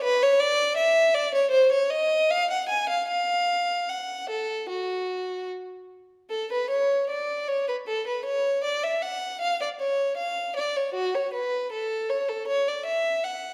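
A single bowed violin sings up front from the first moment, rich and smooth with vibrato and an even tone, carrying a radiant, flowing baroque-style suite movement in F# minor at a flexible 77 BPM in 4/4 whose rubato keeps the beats uneven, moving into a new section at 6.3 seconds and ringing out in a moderate recital-hall reverb across this short excerpt from a longer piece.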